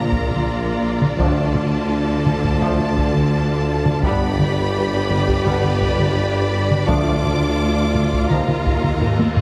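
Heroic and epic, this cinematic orchestral film-score excerpt sets a lush, vibrato-laden violin melody over a soft-attack second violin line, focused violas, and a string section and clear trombones holding sustained chords, with a bass of cellos, double basses and a smooth-topped tuba beneath close, heavy-stick taiko drums; mellow, distant French horns and round, soft-malleted timpani join at 1.2 s, and a drum fill arrives at 9.0 s, the whole set in a moderate scoring-stage reverb with a heavily compressed, radio-style sound.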